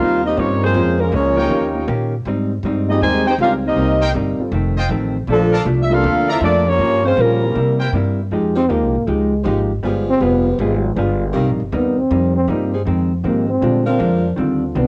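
A mellow saxophone section carries the melody over a swinging big band groove in F minor at 159 BPM, backed by a warm trombone section, bright, distant trumpet stabs, dark clean hollow-body guitar, woody upright bass and a grand piano in the background, before a breathy trombone takes a sultry solo at 8.3 seconds over dark sustained saxophone chords. The saxophone melody and the trombone solo carry cassette tape character, plate reverb colours every part but the bass, and it is all a home recording on cassette cut from a longer piece.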